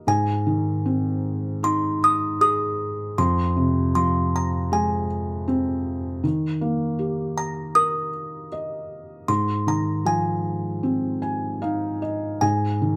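The sound is intimate and close, set in a small room with moderate reverb, and both instruments sit up front. This short excerpt of a tender, innocent lullaby in Ab major moves at a rubato 78 BPM in 4/4. A felt-muted upright piano gives soft, dark accompaniment with audible action noise, and a slightly out-of-tune, tinkling music box carries the melody through plate reverb over chords of Ab, Fm and Eb, with a mellow piano fill from 10.8 to 12.4 seconds.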